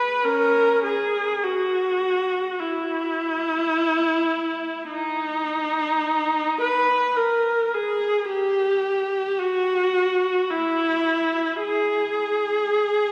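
A single bowed viola opens the recording, playing alone in G# minor in free time, its tone rich in the register between C#4 and B4. The classical mood is yearning and mournful, and the player shapes each phrase expressively, with vibrato and with portamento gliding between notes. The instrument sits up front yet carries a distant quality, set inside a church acoustic whose wet reverb lasts about 3.0 seconds and is heard from further back in the room. That long reverb tail surrounds the lone line. The passage runs from 0.0 to 13.1 seconds and is cut from a longer piece.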